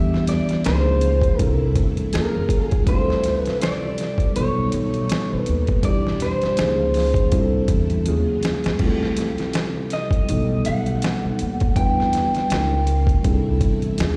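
Sensual and warm, this neo-soul R&B excerpt at 81 BPM with a swung 16th feel sets a slightly broken-up electric guitar melody, with slapback echo and plate reverb, over a mellow tine electric piano, shimmering vintage string-machine violins in the background, a woody pizzicato upright bass and a gritty, pitched-down boom bap drum kit up front that enters at 0.1 seconds and plays a fill at 8.1 seconds, the whole captured as a live gig through the venue's PA in a recital hall and cycling through chords such as Em7, Db6, Ebm11 and B7b13.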